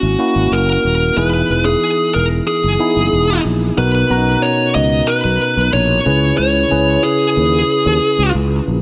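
A distorted, high-gain lead guitar with delay carries the melody up front, its dark, picked tone sitting over a clean tine electric piano heard through built-in speakers and a growly fretless electric bass with analog chorus. This short cut from a longer 1980s-style pop piece moves at 92 BPM in a straight 4/4 with an urgent, moody feel, the chords shifting from F#7 and Emaj7 to Bmaj7 at 3.8 seconds and then C#m7. Light reverb and digital ambience frame the mix, and the guitar drops out at 8.3 seconds while piano and bass carry on.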